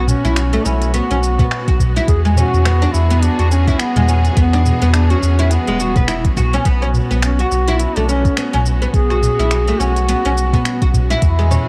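A deep, round sub bass sits up front with transformer saturation, anchoring this meditative, earthy stretch of organic downtempo cut from a longer piece, moving at 105 BPM in 4/4 with a 58% swing on the sixteenths. Over it, a distant, roomy duduk carries the folk-style solo melody with scooped notes and delay, while a bright, woody oud plucks double-string arpeggios through tape echo. A lush, bowed studio string section holds sustained chords with vibrato in the background, its smooth top pumping under sidechain. The groove comes from an electronic kit with crisp hats, cabasa and finger snaps, a small clay-shelled darbuka tucked behind, and a soft electronic kick that arrives at 1.4 s. The harmony moves from Bsus2 to E at 2.1 s and back at 6.7 s, and the whole mix carries light small-room reverb and the worn, warbly pitch drift of old cassette tape.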